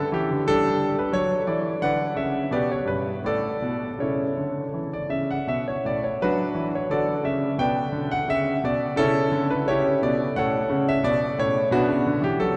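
In a flowing rubato 4/4 at roughly 80-90 BPM, this short baroque-style suite movement for solo concert grand piano has a dance-like lilt. The clear, intimate piano sits up front with deep bass and audible action noise, ranging from G2 to G5 as the harmony moves from G through A and D to an Em13/B, a C#m7b5, an A69 and a closing Bm near 11.7 seconds. A long cathedral reverb and a dark production wrap the 12.6-second fragment in a spacious glow.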